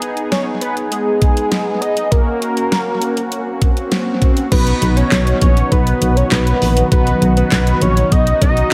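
Upbeat yet wistful, this synth-pop excerpt pairs a fat, detuned analog lead carrying the melody over dark, brassy synth accompaniment and a knocking, tape-tinged pop drum kit with handclaps and crash, and after a faint electronic swell at 3.5 seconds, a punchy, round FM bass and a very quiet vintage string-machine cello bed enter at 4.5 seconds, all set in an echo-heavy mix with light digital ambience.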